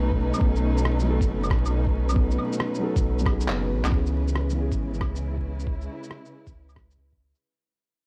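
A faint vinyl crackle and light reverb frame this short fragment of a wistful, rainy future garage track, with a swung shuffle to its groove. A felt-muted upright piano plays soft, dark, intimate accompaniment through an analog delay, while a studio string section holds bowed chords with vibrato, portamento and a smooth top. Both of these pulse with sidechain pumping, as does the round, sine-like sub bass that sits up front with a deep, mellow tone. The sampler-style electronic kick is pitched down, muffled and thumpy, and a compressed, tape-toned kit of shaker, claves, rim click and handclaps sits quieter beneath it. At 3.5 seconds the kick drops out for a drum fill, and from 3.9 seconds the harmony shifts from B7 to C#m7 as the music fades, with the piano stopping at 5.7 seconds.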